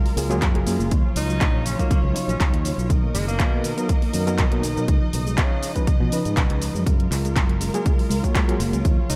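A light reverb wraps this short nu-disco excerpt, where a punchy, overdriven electronic kick sits up front and the house kit's handclaps, hi-hat and shaker carry a gritty, large-room sheen. At 121 BPM in 4/4 with a gentle 16th-note swing, the mood is sleek and cosmic, moving through Gbmaj9, Ebm9, Bmaj7 and Db9 before returning to Gbmaj9. A growly, tube-saturated fingered electric bass drives the low end, while a reedy, barky electric piano played through a combo amp adds accompaniment with fast tremolo, vintage 12-bit sampler grit and a diffuse ambient delay. Beneath it, a veiled con sordino string section holds dark, bowed chords that pulse with sidechain pumping, and a very quiet, round filter pluck with chorus spins arpeggios. A clear, distant tenor saxophone with tape echo sings a brief pop-style melody from 1.2 to 3.6 seconds and reappears just at the close.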